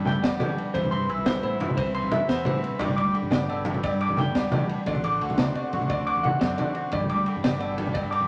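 Slightly broken-up electric guitar arpeggios ring out over a twangy, scooped clean guitar with phaser, a reedy combo organ holding sustained chords with light vibrato in the background, a round fingered bass, ringing congas played with soft hands from a distant large room, and a crunchy breakbeat kit with dark cymbals, a high-tuned snare and a tight kick, all moving through G, Cmaj7, G and D7 in this joyful, carefree highlife guitar band excerpt in G major at 117 BPM in a straight 12/8, set in a wet club reverb.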